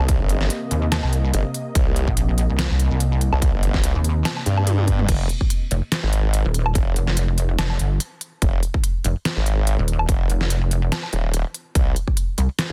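A formant-sweep wobble bass anchors this heavy, chaotic excerpt of wobble dubstep, its sawtooth-and-sine tone sitting up front with chorus and overdrive from the very start. At 144 BPM in 4/4, with a half-time feel and 55% swing on the sixteenths, the piece stays in F minor, moving from Cm7 to Fm7 at 5.1 seconds. A second, pulsing pluck wobble bass enters at 0.7 seconds, detuned and saturated, with its own chorus and overdrive. Beneath them, a punchy, tape-warm electronic kick and a layered dubstep kit with deep snare, crisp hats, crash, toms and woodblock carry studio reverb, and a drum fill leads into the second drop. A lush supersaw pad with phaser, low-pass filtering and sidechain pumping holds sustained chords only through the opening seconds. The master is dense and heavily limited, with little room ambience overall.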